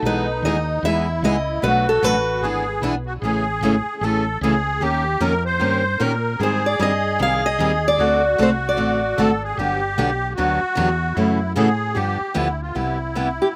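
A bright, picked steel-string acoustic guitar carries the melody up front in this playful, charming excerpt of acoustic string swing in the jazz manouche style, playing phrases at 0.0 and 6.4 seconds before a brief final note near 13.4 seconds. A reedy musette accordion with a shimmering tone holds the second line throughout, while a second picked steel-string guitar supplies the accompaniment. A dark, round, punchy fretless electric bass sits lower in the mix, and the dry outdoor sound keeps every part close and direct as the chords move through a chain of major-seventh, minor-seventh and dominant changes.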